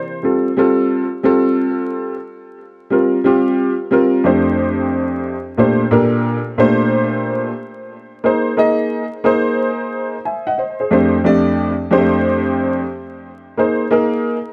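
Swung sixteenths at 90 BPM in 4/4 give this short hip hop excerpt a relaxed, loping sway, with the swing set at 65%. A lone upright piano carries everything from 0.0 to 14.4 seconds, ranging from F2 up to Ab5, its tone woody, worn and slightly detuned, sitting up front with a natural character and a touch of tape echo. The harmony stays in F major, tuned to A4 = 444 Hz, drifting from F and C5 through F69 and Bbmaj9 to Bb9sus4, Fadd9 and back to Bb9sus4, for a warm, unhurried mood. The sound recalls a dry, close 1970s-style studio recording, with light reverb and a bed of vinyl crackle adding dusty, lived-in texture. The passage is cut from a longer piece.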